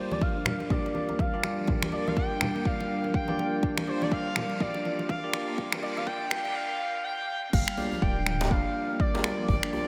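A dreamy, reverb-soaked mix opens this spiritual, earthy afro house excerpt, where a smooth, up-front portamento lead with chorus, phaser and tape echo sings over a dark, detuned analog pad, woody background marimba arpeggios under a filter sweep, and bright, bell-like electric piano stabs carrying a gritty sampler edge. A deep electronic kick, a layered deep house kit with crash, finger snaps and toms, and ringing low-tuned congas drive the build-up, the congas dropping out at 6.5 seconds. At the drop at 7.5 seconds, a round sine sub bass and a distant djembe with metal rattles join the groove.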